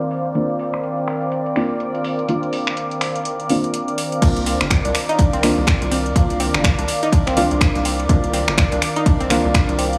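A smooth, hypnotic deep house excerpt at 124 BPM in C minor with a swung sixteenth feel, where a warbly lo-fi pad on a Cm11 chord, a breathy airy pad and dark detuned chord stabs with tape echo pump under sidechain alongside an overdriven kit of snaps, metallic hats and crash, all moving through a filter sweep until the drop at 4.2 seconds brings in a deep, up-front overdriven kick, a rubbery, nasal square bass, a round phased analog pluck arpeggio, and a very quiet acoustic jazz kit adding ride and snare, all set in light small-room reverb.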